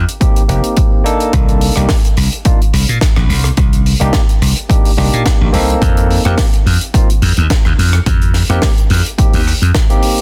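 A punchy, up-front slap bass anchors this short nu-disco excerpt, its bright, amped tone ranging from F1 to Bb2 at 107 BPM in 4/4 with a light 16th-note swing. Beside it sits an electronic kick drum, layered and tape-toned, equally forward in the mix, while a tight funk kit adds hi-hat, rim click and a high-tuned snare given soft clipping, all heard in a small, natural room. A barky tine electric piano supplies the chords through a combo amp, its clean bite pumped by sidechain and trailed by tape echo. The harmony moves from a rootless F7sus4 to Cm7 at 1.3 seconds and back to F7sus4 at 5.8 seconds. The mood is cosmic and sleek, with a dense, heavily limited modern master keeping the groove tight across its roughly ten seconds.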